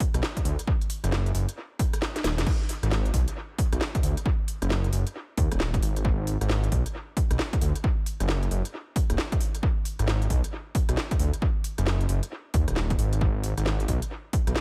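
A dry, echo-heavy mix carries this bouncy, soulful cut of two-step UK garage at 134 BPM, swung on the sixteenths. An up-front, punchy analog kick with overdrive locks in with a layered electronic garage kit of cracking snare, crisp hats, rim clicks and crash cymbal thrown into dub echo, over a deep, rumbling detuned saw bass whose beating, sustained low end sits forward with tube saturation. The kick drops out at 2.0 seconds while a drum fill runs to 2.5 seconds, where the groove comes back in full.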